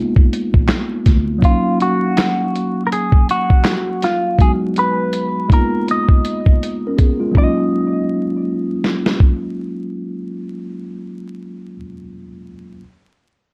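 Swung sixteenths at 81 BPM drive this melancholic, reflective lo-fi hip hop piece in Eb minor, built on a muffled, thumpy sampler-style drum kit with vintage 12-bit grit (kick, snare, hi-hat and handclaps). Over it sits a worn, slightly out-of-tune tine electric piano under a low-pass filter, with a brief woody pizzicato upright bass from 0.5 to 1.4 s. A clean, fingered semi-hollow guitar melody with phaser enters at 1.4 s, and the whole mix is set in a dark small room with vinyl crackle.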